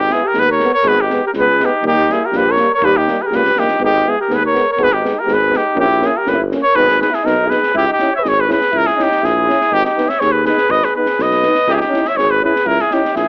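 A clear, up-front trumpet carries the melody of this restless, fiery Balkan brass band excerpt, singing with vibrato in a classical style over a steady 2/4 at 122 BPM in G# harmonic minor. Beneath it a mellow flugelhorn plays a second line with vibrato, sounding distant and roomy, while a mellow tuba anchors the bass throughout. A dark trombone and a euphonium with light vibrato fill in the accompaniment in the background, both arriving at 0.1 seconds and dropping out at 13.0 seconds. A compact cocktail drum kit, acoustic and smooth with a high-tuned snare, punchy kick and rolled-off top, sits quietly behind the horns in a small room. The flugelhorn, trombone and euphonium carry a cassette tape coloring, and the whole recording has the lo-fi character of a home cassette with an AM radio sound and light reverb, moving from a first section into a second at 7.8 seconds where the harmony shifts toward C#m.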